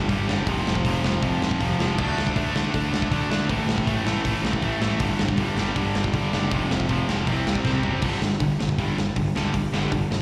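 A double-tracked, overdriven electric guitar sits up front, playing a bright, picked riff coloured by a slapback echo through power chords such as F5, D5, A5 and G5. Beneath it, a fuzz-soaked picked bass adds a growly, punchy low end with its own overdrive. A big acoustic rock kit drives the energetic, rowdy punk rock feel in a straight four, with a punchy kick, a medium-tuned snare, hi-hat, crash cymbal and toms, its top end rolled off. A drum fill from 7.6 s ushers in a new section at 8.0 s, and this cut from a longer piece ends soon after at 10.2 s. The whole band sounds like a live gig heard through the venue's PA, wrapped in a small room reverb.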